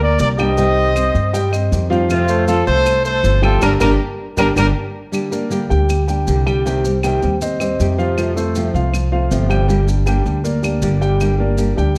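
A punchy, vibrato-rich trumpet leads this sultry Cuban son and guajira passage in G minor at 158 BPM, with a soft, floating bowed violin section in the background until both stop at 4.7 seconds, while a dark, vintage baby grand piano plays arpeggios, a thumpy gut-string upright bass sits up front, a fingerpicked nylon-string guitar with old strings adds full-bodied accompaniment, and grainy maracas and woody claves enter within the first half second, ahead of a band accent from 3.6 to 5.1 seconds, all within a warm production and large studio reverb.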